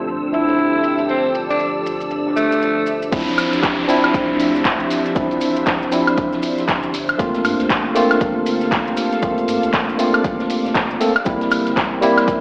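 A smooth, moody deep house passage opens on silky string-machine chords, clean tine electric piano stabs with a filter sweep and digital delay, a round analog bass, a dark ambient pad and a lush violin section, all pumping against the sidechain, while a quiet jazz kit and grainy maracas tick underneath. From 0.3 seconds a raspy, growling tenor saxophone carries a jazz-style melody with scooped notes and dub echo. At 3.1 seconds the drop arrives, with a punchy electronic kick, a filtered analog drum machine with handclaps and woodblock, and an electronic downlifter, all heard as if played on a big sound system in a bare room with a muffled AM-radio tint.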